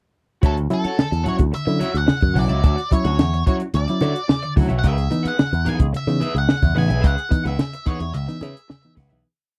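A tight sixteenth-note funk groove at 109 BPM in 4/4 from a compact cocktail drum kit, with a punchy kick and high-tuned snare, drives this hypnotic, funky piece. Up front, a picked electric bass with an envelope filter plays a syncopated riff with muted ghost notes, while a twangy tremolo rhythm guitar at the edge of break-up adds muted scratches and a reedy, slightly out-of-tune electric piano plays percussive stabs. Low-tuned congas sit in the background with a slap on two and open tones on four, and a dark octave-fuzz lead guitar tosses out call phrases over Dmaj9 shifting to C#m7 at 4.8 seconds. The sound is a dry, close 1970s-style studio recording that fades out from 7.0 seconds.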